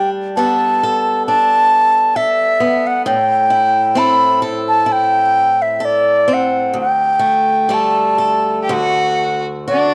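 Nostalgic and tender, this short cut from a longer Celtic slow air drifts in G major at roughly 60-68 BPM in 4/4, with a rubato feel that lets the phrases breathe. A baroque flute carries the melody up front, its wooden, airy tone straight and crisp in attack, sitting between D5 and B5. Beneath it, a picked acoustic guitar in a swing style supplies the accompaniment, its fresh strings giving a warm, boxy body across a span from D2 to A4. The harmony moves from Gadd9 to Am, then settles through Dsus4 onto D. At 8.6 seconds a single bowed fiddle joins with a smooth, even second line and light vibrato, clear and close in the mix. Light studio reverb gives the performance a gentle sense of space.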